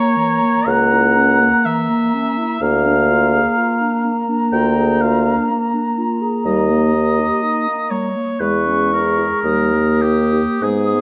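Set in a moderate recital hall reverb, this yearning, melancholic passage from a romantic movement for wind quintet unfolds with rubato, as an airy silver concert flute with vibrato and a soft attack carries the melody over a distant oboe second line, a dark, roomy French horn and a smooth clarinet in the background supply accompaniment, and an up-front, punchy bassoon joins on the bass at 0.7 seconds.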